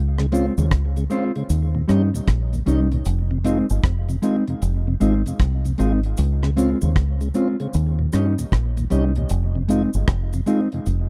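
Roots reggae in F minor at 77 BPM, this short, meditative cut from a longer piece moves with a laid-back 4/4 swing on the sixteenths. A deep fingered electric bass sits up front from the first moment, its foam-muted, round tone sounding dark and direct as it carries the low end. The dry reggae drum kit, also up front, enters at 0.2 seconds with hi-hat, rim click and a tight kick, while a mellow tonewheel organ with key click and vibrato turns through a slow rotary speaker and trails dub echo behind its chords. A clean, fingered electric guitar adds its own dub echo in the middle register, and a faint cabasa sits far back in the mix. The harmony cycles from Dbmaj7 through Eb7 to a lingering Fm7, twice over, and the whole sound stays close and intimate, like a 1970s studio session in a small room.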